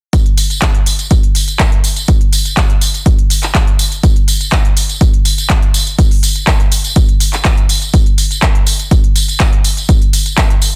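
House groove at 123 BPM in a straight 4/4, driving yet dreamy, cut from a longer piece and built entirely from percussion. A punchy electronic kick drum sits up front, layered and tape-warm, with a small room reverb lending it body. A pop drum kit of handclaps and crisp hats runs beneath it at a lower level, its produced, electronic layers sharing that small room ambience. A jingly acoustic tambourine plays throughout the roughly 10.7 seconds, adding a room-toned shimmer. The overall sound is dense and heavily limited in a modern master, with little reverb beyond the drums' own small space.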